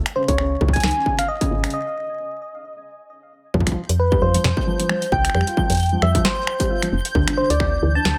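Glitchy and intricate, this short IDM cut swings its sixteenths over a booming analog drum machine of finger snaps, metallic hats and a tonal snare, joined by a distorted electronic kick heard in a large room and a woody, round FM bass. A soft, keys-like synth lead with chorus, vibrato and delay carries the melody up front, while a felt-muted upright piano spins mellow, intimate arpeggios through digital delay, all within a light reverb and a break from 1.7 to 3.5 seconds. At 3.5 seconds the chords move from Dbsus2 to Fsus2, and at 4.1 seconds a twinkling granular texture adds sparkling, octave-up shimmer above them.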